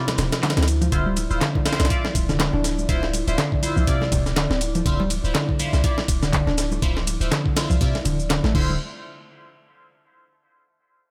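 Driven by a swung 122 BPM breakbeat in D minor, this raw, energetic excerpt drops straight into a Dm9 groove where a gritty, compressed sampler-style kit with thumpy kick and high-tuned snare sits up front alongside a layered house kit of handclaps, ride and shaker, very quiet soft-handed congas and bongos, a deep, boomy 808-style bass, an overdriven, foam-muted picked electric bass riff, nasal band-passed sawtooth stabs trailing dub echo, and a moody sawtooth pad pumping under chorus and phaser, all falling away to silence of chords at 8.8 seconds.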